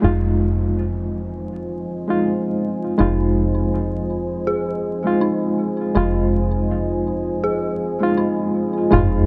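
Trip hop at 81 BPM in F minor with a lightly swung sixteenth feel, this dark, hypnotic excerpt rests on a single Fm7 chord. A reedy, worn, slightly out-of-tune electric piano sits up front with tremolo, 12-bit sampler grit and tape echo, over a round, punchy, foam-muted dub bass with tube saturation. A detuned sawtooth pad with chorus enters at 0.5 seconds under a filter sweep, and an eerie, inharmonic FM bell plays arpeggios from 3.0 seconds, all set in light reverb with vinyl crackle. A background downlifter and sub drop sound over the opening three seconds and return at 8.9 seconds, where an impact lands.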